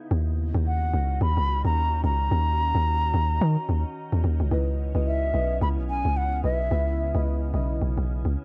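A glassy, warbling FM pad with ensemble chorus and its own reverb opens this short, hypnotic and soulful amapiano cut, sustaining chords under a round, percussive log drum bass that sits dark and up front. From 0.7 seconds a mellow, hollow concert flute carries the melody close-miked with vibrato and a cassette-tape tint. At 4.5 seconds a soft, detuned chord stab arrives with a moving notch, phaser and analog delay over a dry home-cassette sound.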